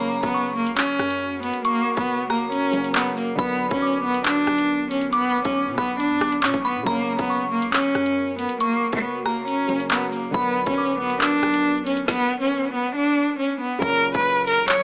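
A clear, focused cello carries the melody up front, a single bowed player with vibrato, setting a menacing, dark tone for this drill-style hip hop piece at 138 BPM in a half-time 4/4 feel, in B harmonic minor. Electronic drill drums, placed up front, come in at 0.2 seconds with a hard-clipped kick, woody snare, metallic hi-hats, rim clicks and handclaps, while a deep, sine-toned 808-style bass with long, decaying notes sits in the background. A glassy, crystalline FM bell traces a bright second line high above, coloured by chorus and tape echo, until it drops out at 11.2 seconds. Underneath, a dark concert grand piano adds mellow accompaniment with short sustain, and from 0.8 seconds a deep, moody ambient pad of detuned sawtooth and sine layers holds sustained chords with chorus and its own reverb. The harmony swings between F# and Bm, and the whole clip, cut from a longer piece, has a small-speaker character set in a moderate recital-hall ambience.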